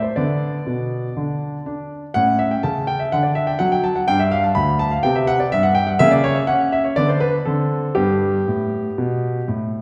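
Elegant and playful, this brief passage from a classical-period piano sonatina in straight 4/4 features a solo concert grand with a clear, natural tone, deep bass and long sustain ringing from D2 to B5, set up front within the lush reverb of a recital hall heard from further back in the room.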